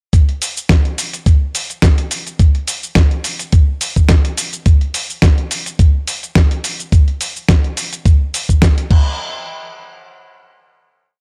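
A dry, gritty hardware recording with little reverb puts this short nu-disco piece up close, its cosmic, sensual mood carried entirely by drums at 106 BPM in 4/4 with a light swing on the sixteenths. An electronic kick drum, thumpy and tape-warm, sits up front with a four-on-the-floor pulse, compressed and sampler-style, re-recorded in a large room. Beside it, a dusty soul sampler-style drum kit supplies a disco backbeat from a medium-tuned snare, with shaker, closed and half-open hi-hat, and crash cymbal, also compressed and captured in a large room. The kick stands louder than the kit, giving the groove a heavy floor under the percussion. The whole piece is one drop that runs to 9.2 seconds, with the drums stopping just before its end at 9.0 seconds, after which a final hit section carries through to 11.2 seconds.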